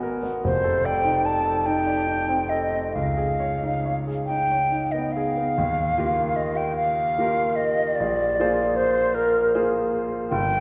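Dreamy and luminous, this short excerpt from a longer impressionist classical piece pairs a flute with a concert grand piano in a slow, rubato 6/8, drifting at roughly 44-52 BPM in dotted quarters and tuned to A4 = 439 Hz. The piano opens alone, its clear, natural tone reaching from a deep bass low in the keyboard up into the treble as it supplies the harmonic bed. At 0.4 s the silver flute takes the melody, sitting up front with a pure, hollow, mellow sound, vibrato and tongued articulation, captured close. The harmony glides through F13 and Db9, then shifts into a second passage at 5.6 s that moves through Ebadd9 to Bb9. A wet church reverb with a long 3.2-second tail surrounds the duo, lending the performance the spacious glow of a church or concert hall.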